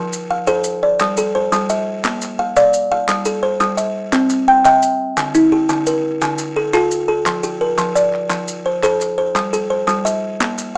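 A rolling 12/8 pulse at 115 BPM, felt in dotted quarters with a straight feel, drives this hypnotic excerpt of southern African traditional music, built on an mbira-style interlocking cycle in G equiheptatonic tuning with A4 at 439 Hz. A buzzing kalimba carries the piece from the first moment, spinning arpeggios between D3 and G5 with a woody, hollow-box tone and bright thumbnail plucks that sit short, mid-forward and up front. Maracas join at 0.1 s with a grainy, mellow shake placed close, and a group handclap arrives at 1.0 s, crisp, human and dry, set lower than the kalimba but above the maracas. The harmony moves through F, G5, Bb, G13sus4, C, Dm and F before settling on Am7/G. A moderate studio reverb surrounds the parts, while the overall sound has the slightly boxed character of a small speaker, giving the cut-out passage a warm glow.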